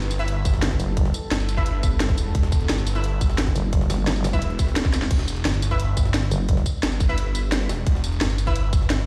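Mechanical and futuristic, this dark technical drum and bass cut from a longer piece drives at 174 BPM in E minor on an Em chord, built on a tight layered electronic kick and a produced kit with a cracking snare, hi-hat, crash cymbal and tambourine, while a gritty, pitched-up jungle sampler-style kit with a high-tuned snare and filtered hats sits in the background, a swirling, thick, phased detuned saw bass pushes up front, a nasal vowel-sweep wobble bass with chorus cuts in briefly and again from 3.6 to 6.6 seconds, bright, punchy orchestra-hit-like synth stabs snap out with dub echo, and a deep, moody ambient pad of sustained chords pumps softly underneath until 5.1 seconds, all heard as if played on a big sound system in a bare stone room.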